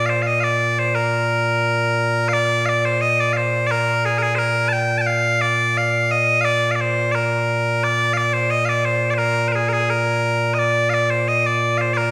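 Ceremonial and stirring, this Scottish traditional excerpt features a solo bagpipe in Bb mixolydian at 87 BPM in a straight 2/4. The bright, piercing pipes sound continuously and up front for the full 12.1 seconds, spanning Bb2 to A5. A recital-hall reverb with a 1.6-second decay gives the performance the resonant air of a church or concert hall.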